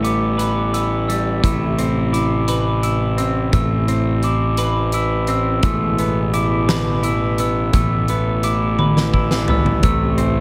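This melancholic, cathartic post-rock passage in 6/8 opens with all its parts together: a bright, clean twelve-string electric guitar picks compressed arpeggios, while a glockenspiel struck with soft plastic mallets rings out metallic, bell-like figures high above, both trailed by analog delay. Underneath, a dark, round fuzz bass sits up front, overdriven on a single low note, and a huge arena drum kit with a fat snare and punchy kick carries the big-room pulse, breaking into a drum fill at 8.8 seconds. A very quiet pedal steel guitar, played with fingerpicks and slide, adds warm, twangy sustained chords, all set in light reverb and small room ambience.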